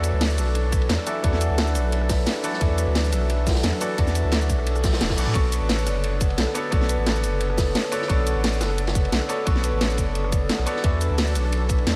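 A rolling liquid drum and bass groove at 175 BPM in straight 4/4 pairs a tight, tape-warm electronic kick from 0.7 s with a layered garage kit of cracking snare, rim click, hi-hat and cabasa, while a gritty, saturated breakbeat kit with dark cymbals sits in the background beneath a deep, thick sine sub bass up front. Over chords moving from E9sus4 to Bm9 and back, a brilliant grand piano with audible action noise and a ringing, close-miked vibraphone playing arpeggios both trail into diffuse ambient delay, as a nasal, detuned sawtooth pad pumps with sidechain and chorus. The soulful, dreamy mix is soaked in hall reverb, with a faint reverse cymbal entering at 4.8 s in this short passage cut from a longer piece.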